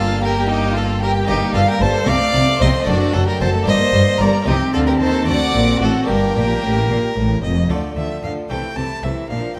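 Stormy and driving, this baroque-style concerto movement in 6/8 with solo episodes is cut from a longer piece. A single violin, close and smooth with even vibrato, carries the melody alongside a chamber violin section played sul tasto with a soft attack and light vibrato, giving the upper line an intimate glow. A second violin section adds a rich, focused inner line, while a clear viola section with a smooth top fills in the accompaniment from the background. A bright, plucked French-style harpsichord adds continuo chords behind them, and the bass is anchored by a lush, bowed symphonic double bass section and an expressive, distant cello section. The harmony churns through minor-key progressions before turning to a new section at 7.7 seconds, all set in a dark, warm production with moderate recital hall reverb.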